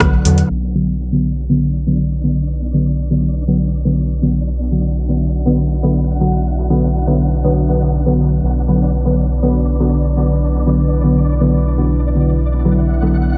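A straight 4/4 dub techno pulse opens with a fleeting deep house kit of metallic hi-hat and rim click in dub echo that stops at 0.5 s, leaving a hazy, nocturnal fragment in which a warbling, up-front chord stab with chorus, phaser and dub echo, a round, deep analog bass and a moody, detuned background pad all pump against the sidechain, while a flickering, grainy granular texture hovers faintly and a filter sweep runs from 0.5 s over a single chord in a wet echo-chamber ambience.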